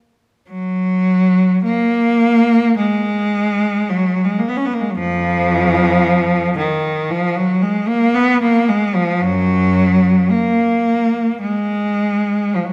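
Bathed in the generous reverb of a scoring stage, this brief excerpt from a longer classical work places a lone bowed cello up front, its tone rich and focused with a smooth top and vibrato. Playing alone from 0.5 to 12.7 seconds, the cellist shapes an expressive rubato line that ranges from F2 to Db4, creating a mood that is yearning and meditative.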